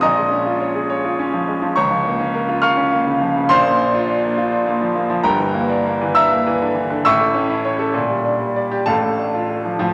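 A bright, up-front concert grand piano plays solo across G1 to F6 with deep bass in this heroic classical virtuoso study, cut from a longer piece, moving in a rubato 6/8 at 68 BPM through chords such as Bbm7, Em7b5/G and A, with the key sitting in D minor from 3.5 s, all bathed in a wet recital-hall reverb.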